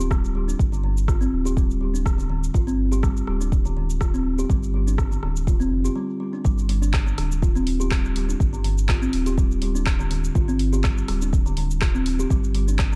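Up front in the mix, a woody, hollow-toned kalimba plays soft fingertip-plucked arpeggios around a Dsus4 chord, its short notes pumping with the sidechain and trailing dub echo in this earthy, spiritual afro house cut at 123 BPM with a light 16th-note swing. Beneath it, a round, sine-like sub bass with tube saturation also pumps, while a deep electronic kick and a layered deep house kit of handclaps, dark hi-hats, rim clicks and shaker sit in a small room ambience. After a brief break at 6.0 seconds, the drop lands at 6.4 seconds, and the dry, echo-heavy mix carries this fragment of a longer piece.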